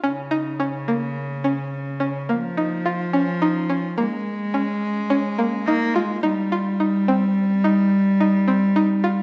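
From the first moment, a twangy, string-like resonator pluck with chorus spins bright arpeggios up front alongside a rich, biting bowed cello carrying an earthy second line, giving this restless, urgent contemporary chamber fragment in 11/8 a worn, warbling cassette-tape drift inside a wet recital-hall reverb as the harmony shifts from Bbm7 to Cm at 6.2 seconds.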